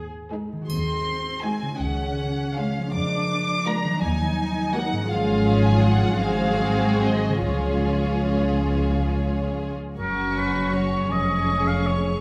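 Concert harp arpeggios ring out over the low bowed lines of muted cello and double bass sections, opening this tender, lyrical slow movement in 6/8 with rubato, soon joined by a muted viola section's accompaniment and a muted violin section's second line. At 0.7 seconds a lush, soft-attacked muted violin section takes the melody with vibrato, its veiled, dark tone touched by a brief, dry triangle in the background. At 10.0 seconds the music moves into a new section as a clear, distant oboe enters with its own second line, the ensemble heard in the reverb of a recital hall, in a passage cut from a longer work.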